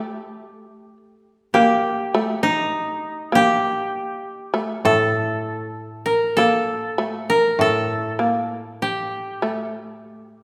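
A woody, fingerpicked koto melody and a bright, buzzing, plectrum-plucked shamisen second line open this austere, still passage of Japanese chamber music, drifting in a rubato 4/4 around 47-52 BPM until a mellow lower koto accompaniment enters at 4.8 s, all ringing in a reverberant recital hall in a fragment cut from a longer piece.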